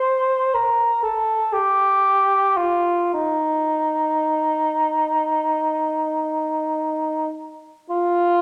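A lone cor anglais opens this brief classical fragment, its dark tone touched with light vibrato as it sings a lyrical, nostalgic line between Eb4 and C5. The phrasing is free and expressive in a slow 4/4, drifting between 40 and 64 BPM with generous rubato. The instrument sits close in a roomy recital hall whose 1.6-second reverb lingers around each note before the passage breaks off at 8.4 seconds, cut from a longer piece.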